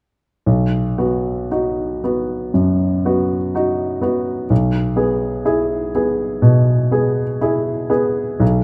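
Warm and serene, this brief classical passage in B major moves at a gentle, rubato 57-64 BPM in 4/4, cut from a longer piece. A clear, natural-sounding baby grand piano plays an up-front accompaniment with short sustain from 0.5 to 8.6 seconds, ranging from B1 to G#4 and shifting from B to E/B at 4.5 seconds. A moderate scoring-stage reverb gives the piano a soft sense of space.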